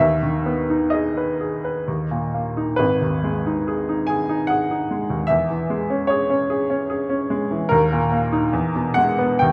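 In a flexible triple metre with free rubato, this romantic classical nocturne for solo piano unfolds in a mournful, yearning mood, a short passage cut from a longer piece. A bright baby grand carries the whole passage, its brilliant yet worn tone sitting up front and natural as it spans from deep bass to the upper middle register. The piano is bathed in a wet recital hall reverb, and the harmony drifts through shadowed minor chords before turning at the close.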